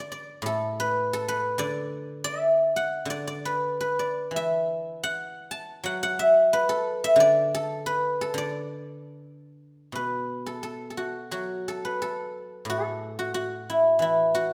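The rhythm floats freely in rubato around a pulse of 89 BPM in 2/4, giving this short passage from a longer Chinese traditional piece an unhurried, breathing feel. A solo guzheng carries everything, played with fingerpicks and sitting up front, its acoustic tone silvery and ringing across a span from A2 to A5. The music rests in a D gong mode, tuned slightly low with A4 at 438 Hz, and its mood is pastoral and elegant. At 9.9 s the piece moves into a new section that runs to the close at 14.5 s. A moderate scoring-stage reverb with a 1.6-second tail gives the plucked notes a soft halo of space around the instrument.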